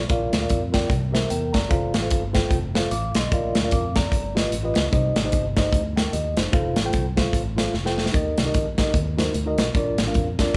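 An uptempo gospel excerpt with a reverent, jubilant mood opens on a mellow, clean tine electric piano and a warm fingered electric bass, joined at 0.1 s by an up-front studio drum kit with a punchy kick, medium-tuned snare and hi-hat, all swinging together in one large room's moderate reverb as the chords move from Bb through G7b13 and Cm, with a drum fill at 7.7 s leading into Eb before Ebm6 resolves back to Bb.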